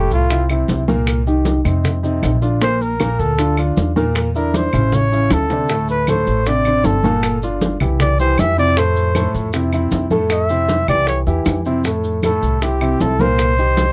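A breathy, close-miked trumpet leads this sunny, sophisticated Afro-Cuban jazz fragment, soloing up front with vibrato and scooped notes until 11.9 seconds, backed by a woody upright piano and a pizzicato upright bass with steel strings. Tight, high-tuned bongos, bright thin-skinned congas played with soft hands, and vintage claves sit in the background, while mellow, grainy maracas add texture, and a drum fill arrives at 4.9 seconds. The dry, close 1970s-style studio sound carries light reverb, and the fragment shifts into a new section near its end over jazzy seventh and ninth chords.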